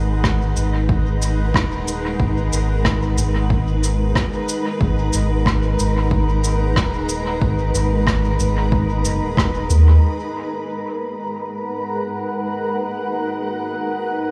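This hazy, deep ambient dub fragment, taken from a longer piece, opens at 0.0 seconds with a cloudy, blurred granular pad and a round sine sub bass, both up front, settling on a G#m7 chord in G# minor. The pad's detuned, evolving chords fade in slowly and hang with a long release inside their own built-in reverb, while the bass sits deep and mellow beneath them. At 0.2 seconds the drums join at 92 BPM in 4/4 with a slight swing on the sixteenths: a punchy, layered electronic kick, overdriven and set in the background, and a dark, smooth rim click and cabasa played with brushes, their rolled-off top trailing a dub echo. The drums and bass fall away by 10.0 seconds, leaving the pad alone to drift through the closing seconds. A light, small-room ambience gives the whole track a soft sense of space.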